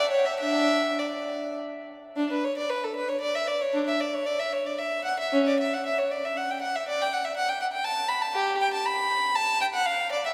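A lone bowed violin sits close and up front, its gut strings giving a rich, reedy, period-style tone. The music is a baroque-style suite movement for unaccompanied violin, serene yet dance-like, moving in a triple metre with a freely rubato feel. The single player ranges from C#4 up to B5 across this brief fragment of a longer piece. A short opening phrase gives way at 2.2 seconds to a new section that carries on until the clip ends at 10.3 seconds. A long, wet cathedral reverb blooms around the instrument, lending the sound the spacious resonance of a church or concert hall.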